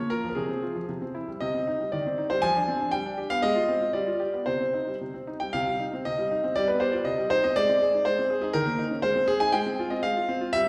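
In a flexible, rubato 2/4 at 119 BPM, this elegant, serious classical-period sonatina in C minor is played by a solo concert grand piano, tuned to A4 = 441 Hz and ranging from C3 to Ab5. The piano sounds clear, intimate and up front, with deep bass and audible action noise, set in the wet reverb of a church or concert hall with a 1.6 s decay. A first phrase circles C minor through G7 before a second section opens at 5.5 s and turns toward Ab and Fm/Ab, and the passage is cut from a longer piece at 10.7 s.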